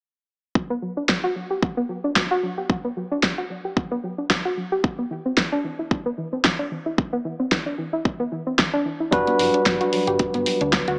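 Sunny and feel-good, this nu-disco excerpt, cut from a longer piece, moves at 112 BPM in 4/4 with a light 55% swing on the sixteenths, in G major and tuned to A4 = 436 Hz. A soft, round synth pluck opens at 0.6 seconds with mellow, decaying arpeggios that have a fast attack, shimmering with chorus and tape echo and pumping against a punchy electronic kick that starts at the same moment. At 1.1 seconds a layered pop kit adds hi-hat and a fat snare, and both drum parts sit up front with the character of a small room. The harmony moves from Gmaj7(no3) to Cadd9 and settles on Gmaj7 at 9.1 seconds, where a barky tine electric piano arrives, lightly overdriven through a combo amp with slapback echo and sidechain pumping. A dark, hollow-bodied fingered bass enters at that same point, deep and quietly punchy beneath the keys, and a moderate plate reverb and a small-speaker tone colour the whole mix.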